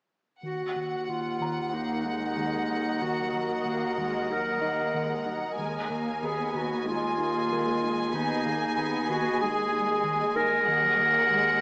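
This is a cinematic suspense film score cue, eerie and mysterious, moving at 94 BPM in 4/4 in Eb minor, cut from a longer piece. A clear, vintage-toned clarinet sits up front with a classical-style solo line, while a rich, focused chamber violin section carries the bowed melody high above it with vibrato. Underneath, a distant double bass section holds a soft-attack Eb2, and a round, deep analog bass with a fast attack and filter sweep plays a dark riff in the background. A felt-muted upright piano enters at 1.4 seconds, mellow and intimate with audible action noise, and the cello section follows at 1.7 seconds, expressive with portamento. From 2.0 seconds a shimmering, ethereal pad with octave-up shimmer, detuned unison, granular texture, chorus and its own reverb evolves over the harmony, which moves from Ebm to Abm over Eb and back, all set in a moderate scoring-stage reverb with a small-speaker sound.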